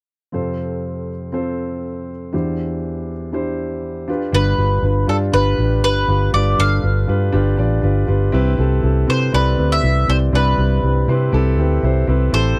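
A bright, picked bowl-back mandolin carries the melody from 4.3 s, its double strings ringing with a slapback echo over a dark, round, foam-muted electric bass that enters at the same moment. Underneath, a concert grand piano with a deep low end opens alone at 0.3 s, accompanying through chords of F, Cadd9/E, G7 and Cmaj7, and adding a fill at 10.8 s. This anthemic, warm piano-driven pop excerpt in C major moves at a straight 120 BPM in 4/4, with light reverb and a dry, close 1970s-style studio sound that keeps every part up front.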